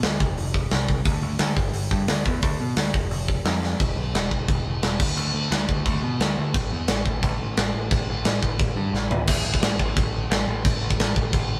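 A big acoustic rock drum kit sits up front, its punchy kick, medium-tuned snare, toms, hi-hat and crash carrying a warm, rolled-off top, with drum fills landing at 3.6 seconds and again from 8.9 to 9.3 seconds. Beneath it, a growling picked electric bass with bright, amped overdrive grinds through the low register in this upbeat, rebellious punk rock clip at 175 BPM. The two sound like a band playing live in one room with light reverb, moving through three short sections over about 11.6 seconds of a longer piece.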